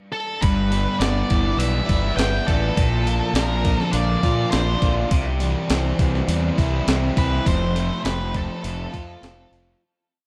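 Shoegaze and dream pop rock at 102 BPM, hazy and wistful: an octave-fuzz lead guitar sings a motif-based melody of call phrases through diffuse ambient delay from 0.1 seconds, then a biting overdriven guitar with reverse reverb and a background semi-hollow guitar with subtle chorus pick arpeggios over a G6, Bb, C and F progression, while an up-front fuzz fingered bass drives eighth notes and a clean, sampler-style 12-bit drum machine with a thumpy kick carries a big rock groove, all bathed in lush hall reverb until the piece fades out from 7.5 seconds.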